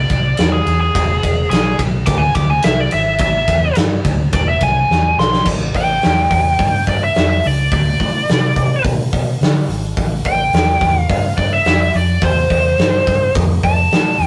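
Blues rock with a southern rock lean, this heavy, smoky excerpt moves at 106 BPM in a straight 4/4 feel in A minor. A biting, bright lead guitar with overdrive plays a solo through the whole 14.3 seconds, sitting up front in a high register. Beneath it, a vintage fingered electric bass gives a dark, round, foam-muted tone that feels punchy and amped. A big acoustic rock kit fills out the trio with a natural, roomy sound, bright cymbals, a medium-tuned snare and a thumping kick, and a drum fill from 4.9 to 5.5 seconds marks the return of the opening passage. The chords travel from E7 through A5 and D5 to Am7, and the whole has the rough, lightly reverberant character of a rehearsal-room take.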